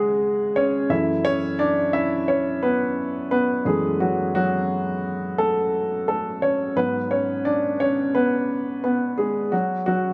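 A lightly swung sixteenth-note feel in 4/4 at 87 BPM drives this driving, dramatic pop fragment in F# minor, cut from a longer piece. A warm, polished grand piano plays alone from 0.0 to 10.1 seconds, sitting up front and present across a range from F#2 to E5, moving from C#sus4 to F#m7 and then to G#m7b5 at 6.8 seconds. A moderate plate reverb gives the piano a lingering tail.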